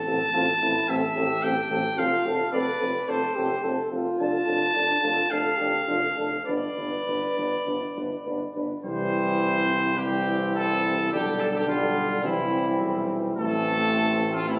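A bright, distant trumpet carries the stately, triumphant melody from the first moment over a clear French horn accompaniment, joined at 0.1 seconds by a dark flugelhorn second line with light vibrato and a softly vibrato-tinged euphonium in the background and a vintage-toned tuba bass, forming a classical brass quintet in C major at a rubato 107 BPM in 4/4 that moves from Am through F and G to a resolution on C, all heard through a lush concert hall reverb as captured on a phone in the room, in a fragment cut from a longer piece.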